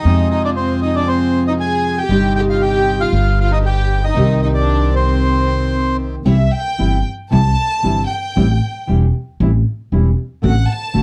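In a rubato 4/4 at 116 BPM, this sultry, dramatic tango excerpt in C minor has a reedy bandoneon melody with plate reverb over softer background bandoneon stabs, a woody thumb-plucked nylon-string guitar, an up-front pizzicato upright bass and a bowed chamber violin section played sul tasto with light vibrato, which takes a solo from 6.3 s as the music turns to C major, all set in a dark production with a moderate club reverb.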